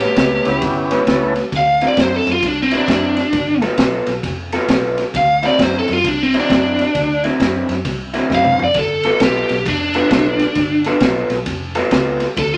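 A moderate club reverb gives this short cut from a longer electric blues shuffle a soulful and rollicking air, swinging at 133 BPM in 4/4 and moving through A9, D9 and G9 chords. A crunchy breakbeat drum kit sits up front with a muffled, lo-fi character, dark cymbals, a high-tuned snare and a punchy kick, playing a fill from 8.3 to 8.8 s. An electric guitar through a small old amp carries the riff with a slightly broken-up, picked tone, while a vintage muted fingered electric bass underpins it with a round, foam-muted sound. A tonewheel organ, thick and lightly overdriven through a slow rotary speaker, appears only briefly from 0.4 to 1.3 s. From 1.5 s the biting lead guitar takes a picked, overdriven solo that rides on top to the end of the cut.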